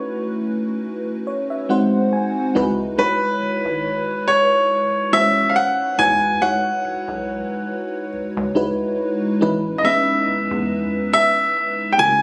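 Captured on a phone in a small room with light club reverb, this late-night contemporary R&B fragment in C# minor drifts at 70 BPM with a gentle 16th-note swing and a longing mood. A lush, warbling FM electric piano with a soft pad layer and chorus opens alone, playing a fill from 0.8 seconds over B9sus4 and G#7 chords, before a rubbery, hollow square bass enters at 2.6 seconds beneath rich C#m11, Emaj9 and Amaj9#11 harmony. From 3.0 seconds a clear, intimate baby grand piano carries the melody up front, its audible action noise and long sustain trailing into tape echo.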